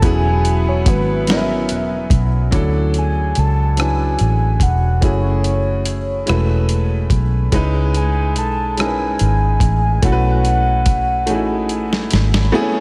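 A slow six-eight R&B groove at 48 BPM rides a dusty, gritty sampler-style drum kit with a thumpy kick and a round, foam-muted fingered electric bass up front, while a clear grand piano with audible action noise comps beneath a soft octave-layered synth lead carrying the tender, sensual melody through chorus and tape echo, brief jazz-style horn stabs with tape echo sit in the background for the first 2.1 seconds, chords move from E69 through Dmaj7, F#m9 and C#m9 to B9sus4, and a drum fill at 11.3 seconds closes this dreamy, hall-soaked excerpt.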